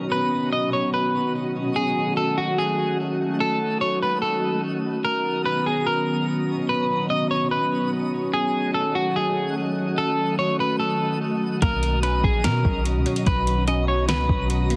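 A warbling, nostalgic pad sustains lo-fi chords that move between Bmaj9 and F#m6 with a sidechain pump, while a twinkling granular shimmer sparkles alongside it and a slightly broken-up electric guitar carries a dark, up-front melody through delay, setting a dreamy, floating cloud-rap mood in half-time at 146 BPM. At 11.6 seconds a glassy, crystalline pluck adds arpeggios in the background, a deep, round 808-style bass arrives, and a smooth R&B kit enters with a soft kick, fat snare and metallic hats. The whole fragment sits in light digital ambience with a heavily compressed, radio-like sound.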